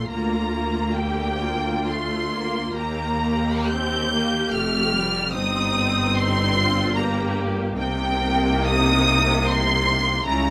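All five string sections sound together from the start of this 10.5-second excerpt of a slow, romantic movement for string orchestra in 3/4, moving with rubato at around 61-78 BPM in a melancholic, yearning mood. A rich, lush first violin section carries the melody high in its range, up front despite a distant quality, with smooth, even bowing and vibrato, while a warm second violin section adds a second line in the same register. Beneath them, the violas supply an expressive accompaniment with soft attacks and portamento, and the cellos and double basses share the bass, the cellos full and smooth, the basses clear with light vibrato, both set back in the sound. The harmony passes through Bb/D, Eb, Eb/G and Cm7, ending on the minor seventh chord at 7.8 seconds. A light reverb surrounds the ensemble, lending the bowed strings a gentle sense of space.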